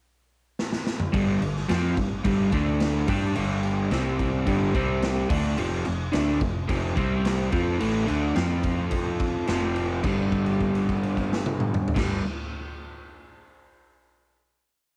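A crunchy, overdriven electric guitar leads this raw, swaggering garage rock piece. It is dark and double-tracked, picking a power-chord riff up front that moves among G5, D5, C5 and F5. Before it, the raw acoustic drum kit opens at 0.6 seconds with a short fill. The kit has a bright stone-room sound with a pumping ambience, a medium-tuned snare, a boomy kick and a saturated, gritty, rolled-off character, set up front in a big rock groove. At 1.1 seconds the riff arrives together with a woody fretless electric bass, amped, hollow-bodied, round and punchy, driving eighth notes that double the guitar line. The whole piece feels like a home cassette recording with light reverb and a faint mains hum, and it closes on a G5 chord held from 10.0 seconds.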